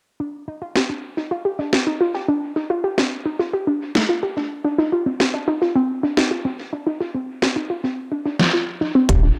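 IDM at 108 BPM in Eb major, tuned to A4 = 436 Hz, with an intricate, playful mood: a warbling, lo-fi, detuned sawtooth pluck spins mellow arpeggios through chorus and tape echo over Ebmaj9 then F5, while a glitchy drum kit of clicky hats and a tiny snare sits up front in dub echo, and a round sine sub bass and a distorted, tape-warm electronic kick drop in at 9.1 s, all wrapped in moderate spring reverb and an echo-heavy mix in this short excerpt.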